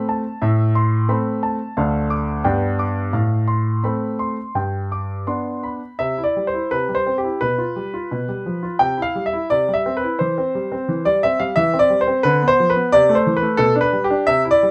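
A clear baby grand piano opens this short portion of a longer piece on an A minor chord, playing alone from the first moment to the last at 14.7 seconds. It is a classical-period sonatina in C major at 86 BPM in 2/4, taken with a rubato feel that gives the elegant, playful music room to breathe. The opening phrase moves through D minor, G and F over A before settling into C major at 6.0 seconds, where a new section begins and the harmony turns brighter and more grounded in the home key. The closing bars pass through a diminished chord and A minor over C, landing on G over B. The piano covers a span from D2 to D6 with a natural, up-front tone and long sustain, set in light reverb.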